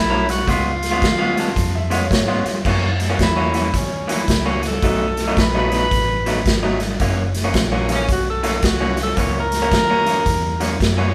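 Electric blues shuffle at 110 BPM in F# mixolydian, swaggering and soulful, this excerpt opens with a distant, subtoned tenor saxophone with scooped notes over a round, foam-muted electric bass, a slightly broken-up, lo-fi guitar riff through a small old amp, and a gritty, punchy garage drum kit that sits up front in a pumping stone room. A mellow, woody upright piano adds a brief second line in the background between 1.3 and 2.5 seconds. From 2.7 seconds the saxophone takes a jazz-style solo over chords moving from F#7 to B7 and back, with the band heard playing live together in a large studio reverb.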